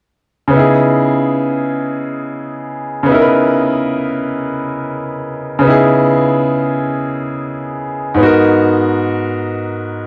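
A bright grand piano sits up front, carrying the accompaniment on its own from 0.5 to 10.1 seconds with a brilliant, open tone colored by a cassette-tape character. This is a sultry, late-night R&B fragment in C# minor, moving in a slow 6/8 at 47 BPM with a straight feel. The harmony rests on a lush C#m9 chord before shifting to G#m9 at 8.2 seconds, and the piano stays within a middle register from G#2 to B4. A moderate small-room ambience surrounds the sound, giving it the intimate feel of a home recording on cassette. Cut from a longer piece, it plays as a single unhurried passage that hints at more to come.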